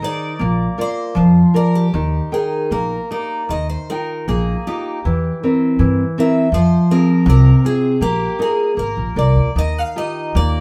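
Moderate studio reverb surrounds this band playing live together in one room, giving a natural sound to a passionate, mournful fado-style ballad in Eb major. The tempo sits around 79 BPM in 2/4, but the beats are uneven and the rubato lets the pulse stretch freely. A picked twelve-string acoustic guitar carries the melody between G4 and F5, its octave-doubled strings shimmering with an auditorium-like glow while it sits lower in the balance. Up front, a full-bodied, fingerpicked nylon-string guitar supplies the accompaniment with a deep classical tone, and a woody pizzicato upright bass joins at 0.4 seconds. The harmony moves from Bb through Eb and Ebadd9 to C7/E and Fm, then leans on Bbsus4 before Bb and a return to Ebadd9 near 9.6 seconds in this short cut from a longer piece.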